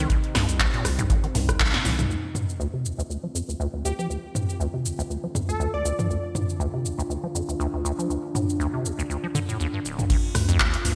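Bright, 1980s-style digital production bathes this hypnotic, raw acid house excerpt in a lush hall reverb. A squelchy, resonant square-wave acid bass sits up front with tube saturation, its riff running through nearly the whole clip and sweeping through its filter from 2.1 s to 10.1 s, over a move from Cm to Dm7 at 2.1 s. The opening drop pairs a deep, tape-coloured electronic kick with a thick, saturated sine sub bass, capped by a band accent and a drum fill. The kick falls away at 1.7 s and the sub at 2.1 s; the kick returns at 10.1 s with the sub following just after. An analog drum machine with a punchy snare, metallic hats, handclaps, rim clicks, shaker, toms and crash keeps a swung groove in gated reverb, while a warbling, nostalgic, lo-fi pad of detuned sawtooth and triangle holds sustained chords with chorus and sidechain pumping. At 3.9 s a catchy, plucky unison lead with vibrato and digital delay adds a short melodic phrase up high.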